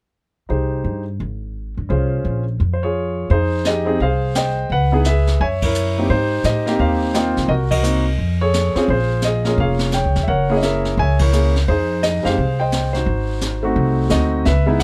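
Cool and moody, this swinging jazz piano trio fragment drifts through rich seventh and ninth chords in 4/4, moving from Abmaj7 and Bbm9 toward a closing Ab7b9. The baby grand piano carries the melody with a natural, up-front tone. Alongside it, the plucked upright bass sits close and thumpy, its steel strings giving a woody depth. The brush drum kit joins at 3.3 seconds, set back in a roomy space with dark cymbals, a high-tuned snare and a boomy kick, its top end rolled off. The full band lands several accents together, and the dry, intimate sound keeps the piano and bass close.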